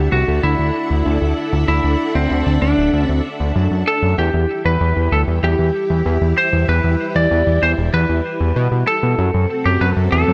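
This synthwave excerpt moves at 96 BPM in a straight 4/4, in E minor with tuning set slightly low at A4 = 439 Hz, and its mood is driving and nostalgic. A fat analog bass sits up front throughout, its thick, detuned sawtooth tone marked by a filter sweep and a fast attack that decays, holding the low end between D1 and B2. Above it, a full-ensemble string machine sustains lush, vintage chords with a slow attack, a sub octave and ensemble chorus, giving a mellow, full-bodied bed. The lightly driven lead guitar carries the melody up front, its dark, slightly broken-up, picked and compressed electric tone trailed by delay. The harmony moves from Dadd9 to Em at 4.2 seconds, then turns to F#dim at 9.2 seconds, all under light reverb in a dark, warm production.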